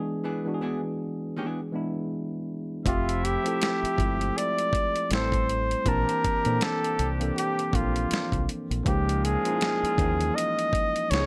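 The recording has a light plate-reverb sheen in this smooth and sensual neo-soul R&B excerpt at 80 BPM in 4/4, with a 16th-note swing in F major. It opens on a break over an E7 chord: a worn, slightly out-of-tune tine electric piano sits up front, and a dark, clean hollow-body jazz guitar adds a brief fingered second line that ends by 1.6 seconds. At 2.9 seconds the full band arrives on Fmaj9, moving through Am7 and Bbmaj9#11 to a lush Db69. A warm flugelhorn carries the solo melody in jazz style, with light vibrato and scooped notes. Behind it, a vintage-sounding horn section plays clear, octave-doubled stabs. The round, punchy dub bass and a gritty, compressed sampler-style drum kit with a thumpy kick and medium-tuned snare give the groove a dusty weight.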